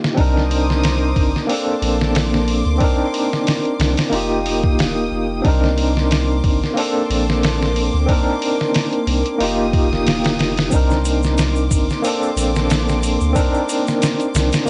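A dry, lo-fi home cassette recording with dulled highs carries this hypnotic, brooding trip hop excerpt, which opens on a drum fill from a compressed, pitched-down sampler kit with a muffled, thumpy kick sitting up front. A barky tine electric piano, coloured by tremolo, 12-bit sampler grit and tape echo, plays the accompaniment over a round, deep analog bass with transformer saturation. Further back, a dark studio string section holds soft-attack bowed chords with light vibrato through the cycling Cm9, Bbmaj9 and F9sus4 changes, and an egg shaker joins in the background at 10.7 seconds.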